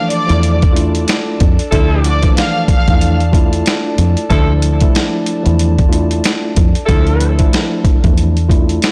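A lush, bowed violin section opens this gritty, reflective boom-bap hip-hop fragment, its focused, vibrato-rich melody treated with analog delay and lasting only until 3.2 seconds. Beneath it, a mellow tine electric piano plays clean accompaniment through its built-in speakers, while a moody, nasal analog pad holds sustained chords with a slow attack and chorus throughout. The sampler-style drum kit arrives almost at once and sits up front, compressed and pitched down, with a thumpy kick, a medium-tuned snare and hi-hat riding a swung sixteenth-note feel. A round, punchy fingered electric bass, foam-muted and roughened by tube saturation, enters at 0.3 seconds in a low register. From 1.7 seconds a tight saxophone section adds clear, lightly vibrato-touched stabs with its own analog delay, and the whole recording comes across blown-out and overdriven within a digital ambience, hovering on a single minor chord.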